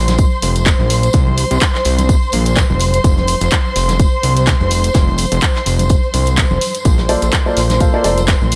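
Piano house at 126 BPM in F major, feel-good and euphoric, with a swung groove driven by a punchy, up-front electronic kick, house handclaps and hi-hats, a soft brush kit with a rolled-off top and bright tambourine and congas set back in the distance. A fat, saturated sawtooth bass with a filter sweep and veiled, con sordino strings holding sustained chords both pump against the kick, moving from Fsus4 to F5 and on to Bbmaj9 at 6.9 seconds. At 7.1 seconds a woody, slightly detuned upright piano with audible action noise slips in with a short delayed riff, all inside a small room reverb.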